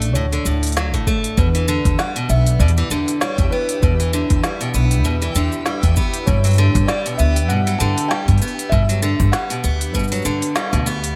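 A lightly swung 4/4 groove from an overdriven electronic kit, with a woody snare, smooth hi-hat and shaker, is joined at 0.9 seconds by a soft, overdriven electronic kick, while a dark, thumpy pizzicato upright bass sits up front. In this delicate, autumnal folktronica passage, a bright, boxy steel-string acoustic guitar picks arpeggios through tape echo, and a felt-muted upright piano sings an intimate melody with subtle chorus and tape echo over Dmaj7, Em7 and G chords. A detuned sawtooth pad holds mellow sustained chords in the background, a twinkling granular shimmer enters at 2.0 seconds, and the band lands a brief accent at 10.6 seconds.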